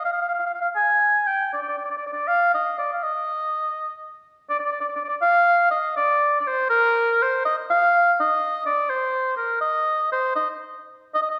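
Romantic and lively, this short fragment of Italian folk music, cut from a longer piece, features a lone oboe playing in 6/8 with a straight feel. The oboe carries the whole recording from 0.0 to 11.4 seconds, sitting up front with a warm, punchy tone, a smooth top and light vibrato shaped in a classical style. Its line stays within a compact range between Bb4 and Ab5. The same melodic idea is heard twice, first up to 4.5 seconds and then again through to the end. A wet, reverberant space suggesting a church or concert hall surrounds the instrument, giving the solo line a lingering, resonant glow.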